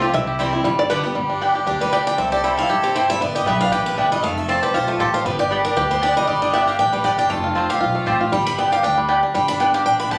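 A driving swung 4/4 at 234 BPM gives this lively, joyful bluegrass excerpt in G mixolydian its push, with a woody, thumpy upright bass plucked underneath and a bright mandolin adding double-string stabs from 0.4 seconds, while the chords move between C, G and F. A twangy, fingerpicked banjo sits up front with the melody and takes a short solo at the start, before a boxy parlour steel-string guitar, also up front with audible finger squeak, takes over the solo from 1.2 seconds. A clear fiddle with light vibrato carries an earthy second line in the background, and the whole band sounds as if caught on a phone in a club with moderate reverb.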